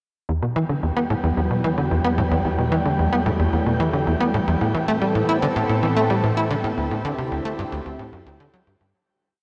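Expansive and mysterious, this short ambient piece of sequencer-driven space music moves at 111 BPM in E minor, with a tight, punchy sequencer bass starting at 0.3 seconds to drive a repeating eight-step riff of nasal, plucky sawtooth and square tones, thickened by lush chorus and analog delay and sitting up front. A swirling, detuned analog pad joins at 0.7 seconds with sustained chords treated by phaser and chorus, while a dark, breathy wind-like noise texture holds a high note in the background, as the harmony moves from Emadd9 through Amadd9 to D7sus4. The whole is bathed in a wet shimmer reverb and the warbling pitch drift of worn cassette tape before fading out from 6.1 seconds.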